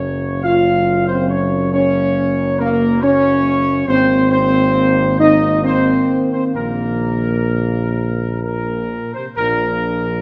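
A scoring-stage reverb wraps this short classical brass excerpt in a wet, spacious sound, giving it a regal, triumphant air at a stately 62-70 BPM in 3/4. A dark trumpet section carries the melody between Bb4 and F5, its soft attack and roomy, distant tone still sitting up front in the mix. Beneath it, a mellow French horn section holds tight sustained chords, while a trombone section with light vibrato and a smooth top supports the harmony from the background. A solo tuba, also mellow and lightly vibrating, anchors the bass low in the range from Gb1 to Bb1 and stands forward. The harmony moves from Gb to Abadd9 at 3.9 seconds and arrives on Bb at 6.6 seconds, all four parts sounding together through the full 10.2 seconds.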